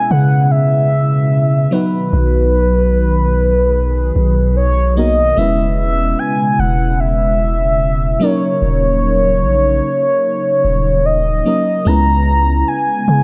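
A round, horn-like synth lead with vibrato and chorus carries the melody up front in this late-night, sensual R&B piece at 74 BPM, over glassy, bell-toned FM electric piano, a hollow, flute-like pad sitting in the background, and a deep, sine-based 808-style bass entering at 0.1 seconds, all drifting through C#m7, Bmaj7, E6 and D#m7 in light reverb.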